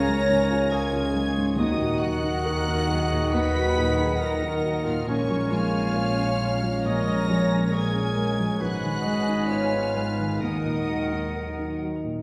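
Set back in a reverberant scoring-stage space, this cinematic excerpt in Eb minor at 68 BPM unfolds with a rubato, longing feel as a rich, sul tasto violin section carries the high melody over second lines from an airy flute section, a clear oboe, a distant clarinet and a smooth-topped chamber violin section, while a dark viola section, a felt-muted upright piano with audible action noise, a tight French horn section holding chords, a ringing fingerpicked harp, a woody double bass section and a floating cello section fill out the harmony, and a very quiet, dry timpani enters at 1.6 s.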